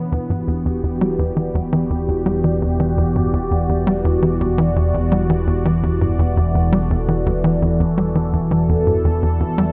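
A steady, straight four-beat pulse is set by a tight sequencer bass riff, its punchy, nasal sawtooth-and-square tone plucked through a filter with a fast attack and a decaying tail, trailed by delay. This is ambient, sequencer-driven space music with a mysterious, hypnotic mood, heard as a brief cut from a longer piece that rests on a single Em7 chord for its full 9.7 seconds. Up front, a phased analog pad holds sustained chords in a swirling, detuned sawtooth voice with a slow attack and long release, colored by phaser and chorus. Beneath both, a fat analog bass sustains a low E1, its thick, saturated tone blending detuned sawtooth and square waves. All three parts play throughout, bathed in a lush hall reverb with a 2.6-second tail that deepens the sense of floating space.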